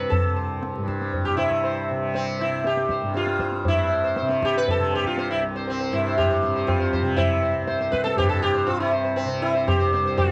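A round, buzzing sitar carries the melody up front over a mellow, softly plucked tanpura drone from the very start, and a low-tuned, ringing tabla joins close by at 0.1 s in this serene, radiant Hindustani classical piece in raga bilaval on C, set in 7/4 at 119 BPM and speeding up throughout, with the sitar and tanpura both carrying a cassette-tape tint inside the moderate booth ambience of a home recording cut from a longer performance.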